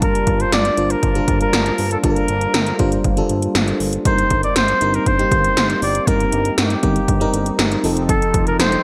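Nostalgic and dramatic, this 1980s-style pop excerpt puts a clear, vintage flugelhorn melody with vibrato and scooped notes up front over glassy, bell-like FM electric piano and a bold, brassy analog pad, both with chorus, while a fat, saturated analog bass and punchy electronic pad drums with a gated snare and metallic hats drive it all in a bright digital mix with moderate plate reverb.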